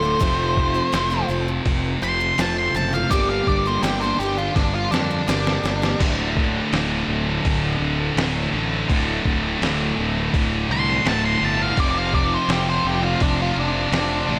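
A dark, up-front octave-fuzz lead guitar solo opens this cathartic quiet-loud alternative rock excerpt in D minor at 83 BPM, set over bright, full-bodied picked steel-string acoustic arpeggios with finger squeak and slapback echo, a thick fuzz guitar riff in the background, a growly, punchy overdriven fingered bass, and a muffled, pitched-down sampler-style drum kit with a thumpy kick and fat snare, whose fill leads to a scooped high-gain guitar riff entering at 6.0 seconds as the acoustic and lead drop out, before the lead returns at 10.7 seconds, all within a big arena-like concert hall reverb.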